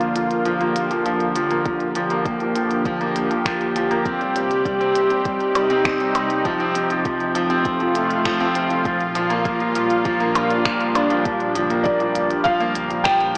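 Cinematic and intimate, this piano and strings electronica piece moves in a steady 4/4, cut from a longer work. A lush, thick unison pad with a warbling, vintage chorus holds sustained chords up front from the start, while a clear concert grand piano plays a riff between F3 and F4, touched with subtle chorus and analog delay. A minimal click drum kit of finger snaps, clicky hi-hats and percussion blips sits low and overdriven, joined at 1.7 seconds by a soft, overdriven electronic kick. The chords pass from Bb6 through Eb6 and F7 and back to Bb6 during the build-up, then settle on Gm7 as the drop arrives at 11.3 seconds. Shortly after, at 11.6 seconds, a round, dark analog bass on G1 pumps faintly in the background, and at 11.8 seconds a felt-muted upright piano carries a mellow melody between D5 and G5, its action noise audible. The whole mix is dreamy and soaked in a wet plate reverb, with a small-speaker sound that keeps it close.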